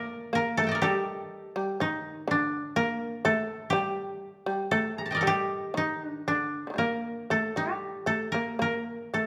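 Set in a moderate recital hall reverb, this still, austere excerpt of Japanese chamber music moves in free rubato around 56-62 BPM in G hirajoshi, with a dry, woody koto played with fingerpicks carrying the melody up front while a buzzing, percussive, plectrum-plucked fretless shamisen supplies a powerful second line below, both sounding together from 0.0 to 9.3 seconds.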